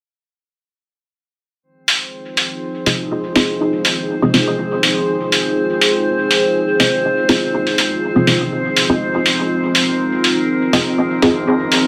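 An up-front, muffled electronic hi-hat opens this meditative, hazy dub techno cut at 1.9 seconds, its sampler-style sound compressed, pitched down and tape-warm, setting a 122 BPM pulse in 4/4 with a light swing on the sixteenths. Moments later, at 2.1 seconds, a drifting glass-harmonics texture arrives, calm and glassy with drifting overtones, its slow-attack sine tones sustained and treated with chorus and reverb. A deep, dark ambient pad follows, holding sustained chords built from detuned sawtooth unison and a sine sub octave, moody and full-bodied with a slow attack and long release. From 2.9 seconds, a filtered dub chord stab adds muted, evolving hits with a fast attack and short decay, its detuned sawtooth and square-wave tone carrying a sub octave and run through phaser and dub echo. The whole passage rests on a single F minor seventh chord in F minor, bathed in a huge ambient reverb that gives this section of a longer piece its spacious, foggy atmosphere.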